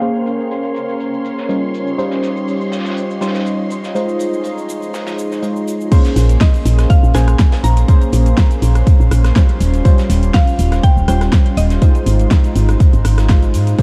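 A lightly swung groove in 4/4 carries this smooth, moody deep house cut from a longer piece. From the start, a layered, tape-toned deep house kit of fat snare, metallic hi-hats, rim click, cabasa and crash sits beside a background acoustic studio kit whose hi-hats pump in a small room. Beneath them, sidechain-pumped chorused analog pad chords and round, mellow sawtooth key stabs with a filter sweep and diffuse ambient delay move through Bbm9, Eb13 and Ab6. A very quiet, blurred granular cloud pad adds texture throughout, while a lush, vibrato-rich bowed violin section plays until the drop at 5.9 seconds, when the strings fall away and a deep, up-front electronic kick joins the drums. A soft, dark, woody FM bass with tube saturation enters at 6.2 seconds, and a percussive mallet-like FM pluck, heard briefly at the opening, returns at 6.4 seconds with chorus, delay and a cassette-tape tint. 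The whole mix sits in light digital reverb with a gentle tape-like, low-passed sheen.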